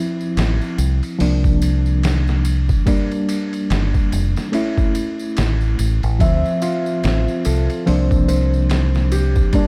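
Trip hop excerpt at 72 BPM with a swung, hypnotic and dark feel, where a reedy, gritty electric piano with harmonic tremolo and tape echo lays down a rootless Dm7 followed by C7sus4, Gm and A chords over a round, tube-saturated deep dub bass up front, a muffled, overdriven sampler-style kit with a thumpy kick, a faint tambourine in the background, and a soft, felt-muted upright piano adding delayed arpeggios from 6.2 seconds, all in a dark, dry production.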